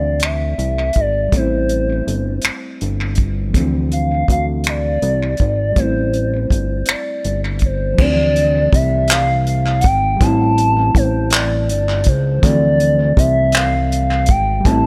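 Slow six-eight R&B with a sultry, late-night mood, cut from a longer piece, where a smooth, gliding portamento lead with chorus and vibrato sings the melody over a reedy, worn electric piano that sounds slightly out of tune, a fat, thick analog bass with a filter pluck, and a damped 70s drum kit of tight kick, dark cymbals, finger snaps and handclaps, all set in a small room with heavy tape echo on the lead, piano and drums as the Dm9 and Am7 chords alternate.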